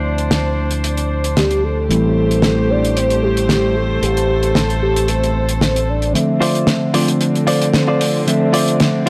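Nu-disco in D minor at 113 BPM, groovy and sensual, this short cut moves from Dm7 to Am7 over a tine electric piano run through a combo amp with a low-pass filter sweep, distant bowed studio strings holding soft, floating chords, and a bright, up-front fingered bass with envelope filter and tube saturation that drops out at 6.1 seconds. A damped 70s kit with a fat snare and hi-hat sits dry and mid-forward, while a round, dark octave-layered synth lead carries the melody from 1.4 seconds, colored by chorus, tremolo, vibrato, tape echo and 12-bit sampler grit. During the build-up, a clean, compressed direct-recorded guitar riff with lush chorus enters at 6.4 seconds, all within a small, lightly reverberant room and a gritty hardware sound.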